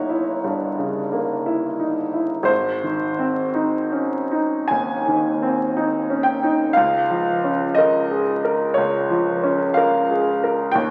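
Set in a slow, rubato 4/4 that drifts between 49 and 63 BPM, this brief fragment of a romantic classical nocturne moves with a dreamy, nostalgic ease. A solo concert grand piano carries the whole passage, its tone clear and natural with a deep bass, reaching from G1 up to Ab5 and sitting up front in the sound. The harmony passes from a Gdim7 at the start to Ab at 2.5 seconds and then to Bbm/Db at 6.8 seconds, lending the phrase a wistful, searching quality. A wet recital hall reverb surrounds the instrument, while the surface of a very old 78 rpm record adds vinyl crackle and a faded, bygone character. Tuned to A4 = 441 Hz, the piece is cut from a longer work and runs just under 11 seconds.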